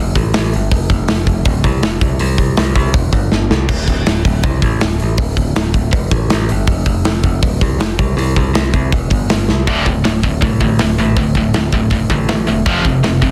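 A growly, bright picked electric bass drives this angry, raw punk rock excerpt from the very start, joined at 0.2 seconds by a punchy, dark-toned acoustic rock kit with crash, hi-hat and a medium-tuned snare, before two tight, distorted guitars enter in the background with a picked riff at 9.7 seconds, all in a dense, heavily limited modern mix with little reverb.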